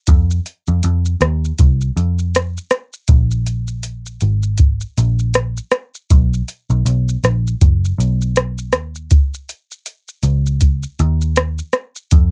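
A soft analog rhythm box with a deep kick, metallic hats, rim click and shaker plays through this lonely, hazy bedroom-pop cut from a longer indie pop piece at 80 BPM with a gentle sixteenth-note swing, joined throughout by a dark, round, foam-muted picked electric bass sitting up front, all captured dry on a home cassette recording whose drums carry a tape-worn haze.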